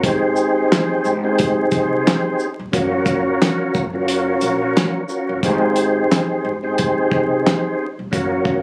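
A smooth, clean tonewheel organ sits up front in this soulful boom-bap hip-hop excerpt, its chorus vibrato, key click and slow rotary speaker colouring chords that move from Abmaj7 to Gbmaj7 and back, over a swung groove. Beneath it, a woody, thumpy pizzicato upright bass on gut strings sits low in the mix, while a cloth-damped, dark drum kit with a fat snare, tight kick, handclaps, hi-hat and shaker keeps a dry, rolled-off feel, its kick dropping out from 4.1 to 5.4 seconds. The whole thing sounds captured on a phone in a room, with club reverb and vinyl crackle adding a worn haze.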